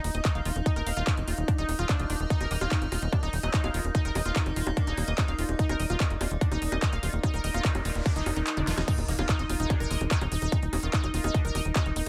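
A driving, psychedelic trance passage opens with an evolving, phased wavetable pad pumping in the background, a tight, punchy sawtooth sequencer bass and an overdriven big-room drum kit with a huge snare, metallic hats, bongos, toms, handclaps and crash, joined by a very quiet, moody ambient pad, a lush detuned unison pluck riff with digital delay and an up-front distorted electronic kick, while a wobbling, aggressive FM bass surfaces from 2.5 s, a faint noise sweep and impact arrive from 7.8 s, and the kick drops out under a drum fill before the drop at 8.9 s.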